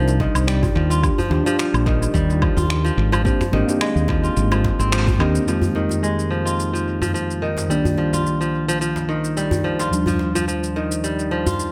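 Organic downtempo in F dorian at 108 BPM with a light 16th-note swing, this meditative fragment pairs a mellow tine electric piano, pumping under sidechain with tape echo, against bright, crisp fingerpicked kora arpeggios through a low-pass filter and analog delay, while a woody, round fretless bass and an overdriven deep electronic kick drive the first half until about 5.4 seconds, joined by a band accent at 4.9 seconds, as overdriven electronic shaker, woodblock and finger snaps, a hard-handed djembe with metal rattles in the background, and a very quiet felt-mallet bronze singing bowl with slow beating fill an echo-heavy mix moving through Cm7, Ebmaj7, Abmaj9#11 and Fm11.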